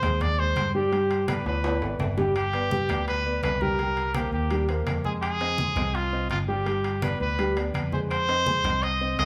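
A clear, up-front trumpet with light vibrato and tape echo carries the melody of this driving, passionate salsa excerpt over a warm baby grand piano, a dark, round fingered electric bass, low-tuned congas in the background, ringing metal-shelled timbales and very quiet woody claves, with a drum fill from 1.5 to 2.4 seconds and the band playing live together in a large, wet-sounding studio.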